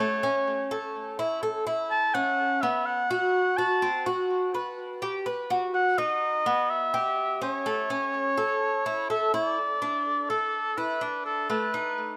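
This rough home demo sits in a moderate plate reverb, in a short cut from a longer latin piece. The tempo is 125 BPM in a straight 4/4, in D major with tuning at A4 = 436 Hz, and the mood is sunny and warm. Up front, a solo oboe sings the melody in a classical style, with a smooth top, light vibrato and a touch of tape echo. Beside it, a Cuban tres plays picked arpeggios on its double strings, some doubled at the octave, with a mellow, acoustic tone and a metallic edge, also carrying tape echo. The harmony moves through chords such as A, Am69/C, G and Em/B, then at 9.6 s shifts to a new passage on Dsus2 that closes on B7.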